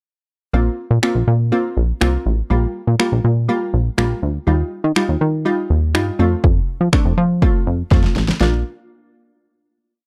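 Summery and euphoric, this short dance-pop piece in Bb major moves at 122 BPM in a straight 4/4, with crisp, detuned wavetable chord stabs in close voicing and a plucky, funky analog bass line, both syncopated and pumping against the sidechain, the stabs also carrying plate reverb. A deep house drum kit joins at 1.0 seconds with a punchy kick, fat snare and finger snaps in an overdriven, up-front four-on-the-floor beat, rolling into a drum fill at 7.9 seconds. The chords cycle from Bbsus2 through Gm7/Bb, Ebadd9 and F before settling on a closing Bb at 8.4 seconds, all in a lightly reverberant space.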